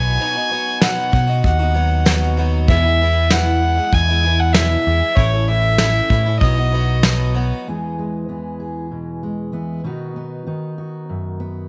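A dark, nasal fiddle carries the melody over a shimmering, octave-doubled twelve-string guitar and a round, punchy electric bass in this uplifting, nostalgic indie folk passage, with soft brushed drums bearing a fat snare and a jingly tambourine tucked behind them joining at 0.8 seconds, before a full-bodied fingerpicked steel-string acoustic guitar takes over alone at 7.7 seconds, all in a close, dry sound.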